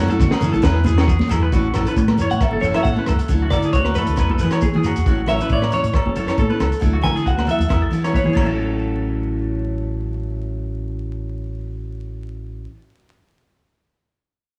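A short cut from a longer highlife guitar-band piece, heard through light reverb and small-room ambience with a faint vinyl crackle, its mood sunny and danceable in a straight 4/4. A deep, round dub bass sits up front beside a gritty, saturated breakbeat kit with a punchy kick, high-tuned snare, rim clicks, hi-hat and dark crash cymbals. Bright picked steel-string acoustic guitar, complete with finger squeak, shares the accompaniment with twangy, slightly broken-up arpeggios from an electric guitar through a small old amp, colored by analog delay. Congas and ringing agogo bells fill the background while a grainy shekere sits close, with the shekere dropping out at 5.0 seconds and the kit and hand percussion gone by about 8.8 seconds. From 2.3 seconds a clean semi-hollow electric guitar plays a hollow-toned solo melody with analog delay, over chords that cycle through Dadd9, Eadd9 and A6.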